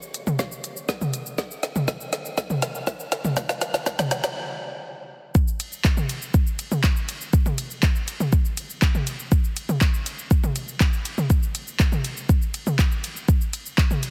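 A deep, layered electronic kick drum sits up front in this driving, melancholic techno cut, taken from a longer track and set at 121 BPM in a straight 4/4. A high-pass filter shapes the kick, which enters at 0.4 seconds and carries the pulse alongside a produced deep house drum kit of handclaps, hi-hat, ride cymbal, shaker, snare drum and toms, also placed up front. The kit's woody snare and smooth hats give the groove its character. The opening build-up is driven by a drum fill that runs until 4.4 seconds, followed by a brief stop before the drop lands at 5.3 seconds and the beat continues to the end. Light reverb and a digital ambience surround the drums, while heavy multiband compression lends the whole mix a squeezed, radio-like sound.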